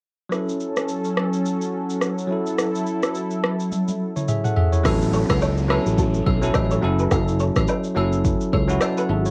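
Romantic and breezy, this afrobeats groove moves at 106 BPM with a lilting 16th-note swing over F#m7 and A6 chords. A bright, bell-like electric piano and an overdriven afro-pop drum kit with a deep kick, rim click, shaker and toms carry it throughout, both tinted by cassette tape, while a smooth, detuned sawtooth pad with chorus and tremolo holds sustained chords until a drum fill leads into the second section at 4.8 s. There a growly, punchy fingered bass and a faint downlifter arrive, agogo bells and woodblock join soon after, and from 5.1 s a slightly broken-up picked electric guitar plays a riff in the background, colored by ensemble chorus and tape echo.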